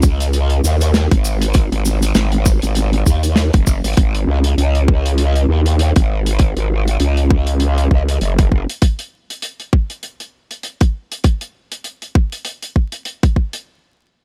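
A swung 16th-note groove at 99 BPM in 4/4 drives this gritty, playful glitch hop passage, cut from a longer piece. A tight, overdriven electronic kick sits up front beside a small-room acoustic kit whose hi-hat and medium-tuned snare sound dark and smooth with a rolled-off top, while a grainy, mellow cabasa adds texture until 3.9 seconds. A saturated, wobbling growl bass with a formant-filtered bite, bright edge and chorus sheen snarls in the low register until 8.7 seconds, and the whole passage sits in studio reverb with a layer of vinyl crackle.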